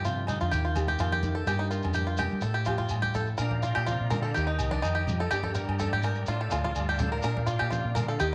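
Joyful highlife guitar band at 125 BPM in Bb major, where a bright, twangy fingerpicked banjo runs up-front arpeggios through tape echo over fingerpicked nylon-string guitar, a dark, round foam-muted electric bass, grainy shekere, ringing agogo bells and low-tuned congas, joined at 3.4 s by a gritty overdriven tonewheel organ playing sustained background chords through a slow rotary speaker and chorus vibrato, all in a moderate echo-chamber reverb in this excerpt from a longer piece.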